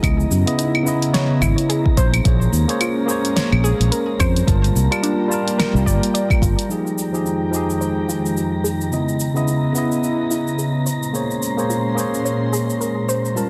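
Smooth, warm sunset chillout at 108 BPM with a gentle 16th-note swing, this excerpt drifts through minor ninth chords as a clean, up-front tine electric piano with delay and a filter sweep over its first 6.7 seconds sits over an airy, breathy pad with chorus and a faint wind-like tuned noise texture. A soft, round pluck with chorus and delay spins arpeggios from 0.6 seconds, while a direct, up-front fretless electric bass and a deep, tape-warm electronic kick drive the groove until 6.5 seconds, leaving the deep house kit's fat snare, hi-hat, cabasa and claves to carry on. A lush hall reverb and a dense, heavily limited modern master give the sound its polished fullness.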